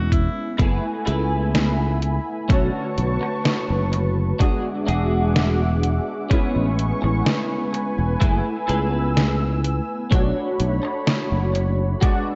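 A growly, sustaining fretless electric bass sits up front in this nostalgic, woozy vaporwave passage, its low notes thickened by ensemble chorus. It moves at a slow 63 BPM in a straight 4/4 over a cassette-tape sound with light reverb and a dulled top end, cut from a longer piece. A thumpy, overdriven electronic kick and a detuned 8-bit drum machine with a medium-tuned snare, hi-hat and gated reverb sound re-recorded in a small room. An edgy tenor saxophone with light vibrato and tape echo appears only in the first 0.6 seconds. The warbling lo-fi synth keys, mellow and evolving with chorus and analog delay, run the full length alongside a lush, thick unison pad that enters at 0.6 seconds with a slow attack and long release. A bright, twangy clean electric guitar also enters there with a compressed, picked riff wrapped in analog chorus and delay, over rootless Amaj9 and F#m11 chords moving through Bm9 and E9.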